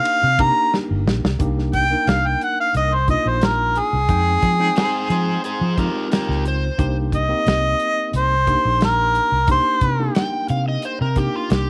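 This is a straight-eighth soul blues at 89 BPM in 4/4 and C minor, brooding and mournful, cut from a longer piece. An up-front harmonica carries the melody with light vibrato, scooped notes and a jazz inflection, its smooth top roughened by overdrive, and it opens with a brief solo, partway through which the drums play a fill. Behind it, a worn, slightly out-of-tune tine electric piano sits low in the mix, clean but heard through its built-in speakers, as the chords move from Cm9 to Fm9 and back. The dry soul drum kit brings a tight kick, medium-tuned snare, hi-hat and dusky ride cymbal with a rolled-off top, while a vintage foam-muted fingered electric bass sounds round, amped and punchy. At 4.8 seconds a warm, overdriven electric slide guitar joins as a second line, and the harmonica stops at 10.1 seconds, all set in a studio ambience.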